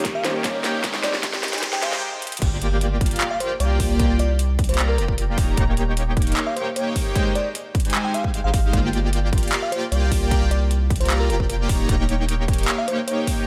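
A soft, full-bodied supersaw riff sits up front through this bittersweet, emotional future bass passage, pumping against the kick at 152 BPM in a half-time 4/4 feel in G phrygian. It opens on a build-up, where a filter sweep on the supersaw, a background riser and a drum fill push forward until a brief stop at 2.0 seconds, and the drop lands at 2.4 seconds with an electronic impact. A bell-like, sparkling FM electric piano carries the melody with chorus, tremolo and digital delay, while a felt-muted upright piano with audible action noise murmurs intimately in the background, and a shimmering, ethereal pad is barely audible, both heard only in the opening seconds. Underneath, a deep, thick, saturated sub bass pumps with the kick, and a tape-warm dubstep kit with a huge snare, metallic hats, handclaps and crash cymbal joins a punchy electronic kick in small room ambience. Chords move from Eb7 and Abmaj7 to Gm7 and back, all under light reverb and digital ambience in this excerpt cut from a longer piece.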